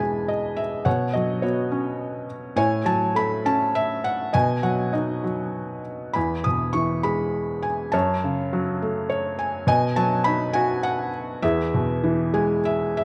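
A felt-muted upright piano carries this bittersweet, moody classical miniature alone, its soft, mellow tone sitting up front with the thin felt and audible action noise giving it an intimate, close-up character. Cut from a longer piece, this lyrical passage moves in a rubato three-beat lilt, with the piano ranging from E2 up to D#6. The harmony circles gently between tonic, suspended and minor colours before settling back home around 11.4 seconds. Brief felt piano fills appear at 8.8 seconds and again at 12.0 seconds, adding small flourishes to the phrase. A moderate scoring-stage reverb wraps the instrument in a dark, warm production that heightens its bittersweet, moody atmosphere.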